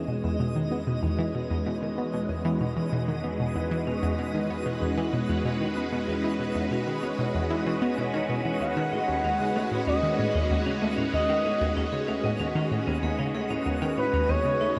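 A huge, wet ambient reverb with a long tail bathes this excerpt of sequencer-driven space music, which moves at 95 BPM in a straight 4/4 and feels mysterious and hypnotic. Up front, a swirling, vintage string machine holds sustained chords through ensemble chorus and phaser, while a round, nasal analog pluck with a fast attack and filter sweep repeats its riff through chorus, phaser and delay. Further back, a metallic, ringing vibraphone struck with hard mallets plays arpeggios through delay, fading in across the whole passage. A twinkling granular texture adds an octave-up shimmer with a long release. The harmony sits on Esus2 until 8.6 seconds, when it shifts to D#dim and a smooth, expressive lead enters with portamento, vibrato and a moving notch, singing its melody through chorus and delay to the end at 14.8 seconds.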